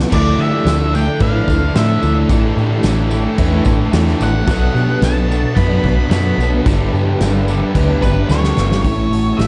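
From the first moment, a wistful, blissful shoegaze and dream pop excerpt at 110 BPM opens with mellow, sawtooth string-machine violas holding sustained chords, a shimmering fingerpicked twelve-string acoustic guitar playing arpeggios, a twangy small-amp electric guitar riff washed in reverse reverb, a thick fuzz guitar riff with lush chorus, and a round, foam-muted vintage bass up front. A loose indie drum kit with a fat snare and punchy kick pumps in the room, while from 0.1 seconds an octave-fuzz lead guitar carries the melody with slapback echo, a bright, double-tracked tight distorted guitar adds another riff, and a jingly tambourine sits in the background. The chords move from Dmadd9 through Asus4, Bm and G, a drum fill arrives at 8.3 seconds, and the whole dark, reverberant production stays free of any sparkle above 10.4 kHz.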